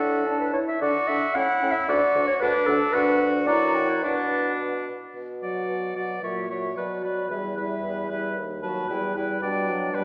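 The warm clarinet sits most prominently in this quick, lively and graceful classical-period movement for wind quintet, its soft attack shaping a full accompaniment line that climbs as high as F#5. Above it, a silver concert flute carries the melody with a pure, metallic tone, crisp attack and expressive vibrato, though it sounds distant. The clear oboe stays up front with a smooth top on its second line, while the French horn adds vibrato-tinged accompaniment in the middle register and the dark bassoon anchors the bass from afar with light vibrato and a roomy, gentle onset. In a 2/4 metre played with rubato, the five instruments sound together for the whole cut, drawn from a longer piece, with a new section arriving at 5.2 seconds as the harmony turns from D and F#7 toward Em and a closing G/B. A wet scoring-stage reverb surrounds the ensemble with a generous, lingering ambience.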